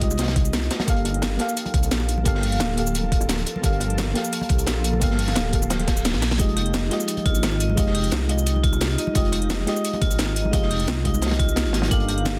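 Dreamy, lush liquid drum and bass at 174 BPM, cut from a longer piece, where a rumbling detuned saw bass with tube saturation sits up front under a round FM electric piano with chorus and dub echo, a very quiet ethereal pad holding Fm9 and Gm9 chords, a knocking electronic kick, a layered kit with cracking snare, metallic hats and shaker, a dark, smooth breakbeat kit with high-pass filtering, very quiet bright bongos and congas, a reverse cymbal from 5.9 seconds alongside a drum fill at 6.1 seconds, and a bright, ringing vibraphone with hard mallets and digital delay arpeggiating from 6.4 seconds, all in a small room under a dense, heavily limited master.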